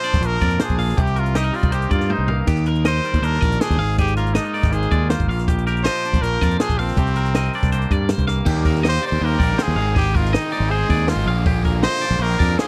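A clear trumpet with vibrato and a smooth top sings a wistful melody over two clean, twangy electric guitars, one playing chords and one picking bright arpeggios, while a compact cocktail kit with dark cymbals, a high-tuned snare and a punchy kick carries this intricate math rock and midwest emo excerpt, adding a fill at 2.1 seconds. A growling, overdriven fingered bass sits up front under chords moving through Cm9, Ebmaj7 and Ab69, and a raw, double-tracked garage guitar riff enters at 8.5 seconds, just before the chordal guitar stops at 10.0 seconds. The sound is dry and close, like a 1970s studio recording.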